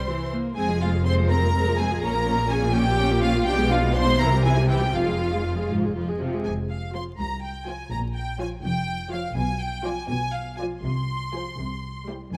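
Set in 6/8, this quick, dramatic and stormy classical-period movement for string orchestra, cut from a longer piece, carries a clear, smooth violin section on the melody above a distant second violin line with soft attacks and expressive portamento, a rich, focused viola accompaniment, and a lush foundation of cellos and double basses, all bowed with vibrato in a moderate scoring-stage reverb touched by vinyl crackle.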